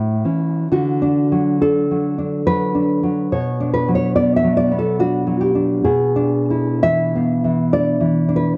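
In a rubato 3/4, drifting between 57 and 73 BPM, this short romantic piece for solo classical guitar unfolds with a tender, warm mood. A lone nylon-string guitar carries everything from the first moment, its thumb-plucked tone dark and full-bodied, sitting up front and ranging from A2 to E5. The harmony in D major opens on an A chord before settling onto D at 0.7 seconds, moving through B minor and arriving at E7/B by 5.8 seconds. The instrument is tuned slightly below standard pitch, to A4 = 435 Hz. A moderate spring reverb gives the guitar a soft halo, and a cassette tape quality lends the sound a gentle, aged character. This excerpt is cut from a longer piece and runs just 8.6 seconds.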